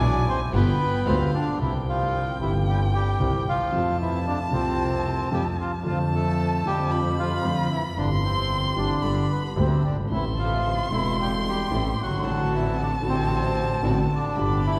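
Set in a lingering church-like reverb with a long tail, this short cut from a longer tango sounds spacious and a little old-fashioned. At 113 BPM in 4/4 with a rubato feel, its mood is playful yet nostalgic. A reedy bandoneon sits up front carrying the melody, while a solo violin, shadowy and expressive, adds a high second line with vibrato and portamento. Underneath, a mellow, intimate concert grand supplies the accompaniment with deep bass, a vintage smoothness and audible action noise, joined by a bright, intense bowed double bass that sounds distant. A very quiet, lush symphonic string section adds sombre bowed stabs at the opening, drops out at 1.3 seconds and returns at 10.1 seconds. The harmony moves from E and G7 into C, F and Dm/F, then C/G, G, Am and D7/A.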